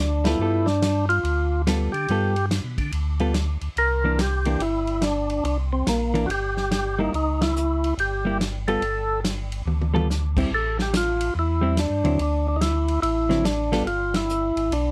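A percussive tonewheel organ with key click and a slow rotary speaker carries the melody over a piping, scooped organ bass with chorus vibrato, joined almost at once by a punchy, small-room soul drum kit with dark cymbals and a dark, compressed hollow-body jazz guitar in accompaniment, in a greasy, swinging soul jazz organ trio passage with light reverb, band accents at 0.2 and 7.3 seconds and a brief drum fill at 9.7 seconds.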